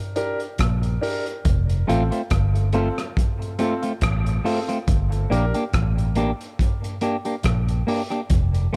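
Deep and hypnotic, this dub reggae excerpt opens on a break where an intimate grand piano, its action noise audible, places echoing stabs over a gritty, saturated breakbeat kit of punchy kick, rim click and hi-hat, before a round, foam-muted fingered electric bass arrives at 0.6 seconds and a clean semi-hollow guitar adds dub-echoed accompaniment from 1.9 seconds, the harmony moving from Gm to F and back inside a dark, lightly reverberant production.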